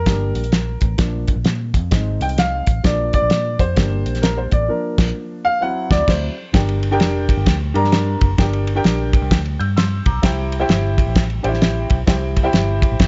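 A mellow, lightly reverberant sound with softened highs frames this short cut from an uptempo 1960s-style soul number at 130 BPM in 4/4, with swung eighths in Bb mixolydian and a joyful mood. A woody, natural upright piano with long sustain sits up front and carries a solo through the first 6.5 seconds. A vintage foam-muted, fingered electric bass gives a round, punchy, amped low end beneath it. A cloth-damped, thuddy drum kit with a fat snare, tight kick and dark cymbals drives the groove from a small acoustic room, with the whole kit sitting a touch above the other parts. The band hits a shared accent from 4.7 seconds, and the harmony moves through Gm, Bb, Ab and D7 before returning to Gm and later reaching C.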